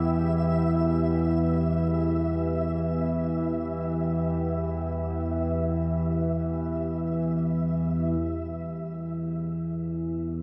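A huge, wet reverb with a long tail surrounds this short, dark and ominous drone piece, cut from a longer work and moving in free time. Up front, a vintage analog drone holds low notes built from sawtooth and pulse waves; its pulse-width modulation and chorus give it a warbling, evolving character. Above it, a deep, moody pad sustains chords from detuned sawtooth layers with a sine sub octave, softened by chorus, its own reverb and a shimmer reverb. A faint, grainy granular texture flickers on a single high note, its detuned triangle tone also bathed in built-in and shimmer reverb. At 8.2 seconds the pad and texture stop, leaving the mellow drone to sound alone until the end at 10.4 seconds.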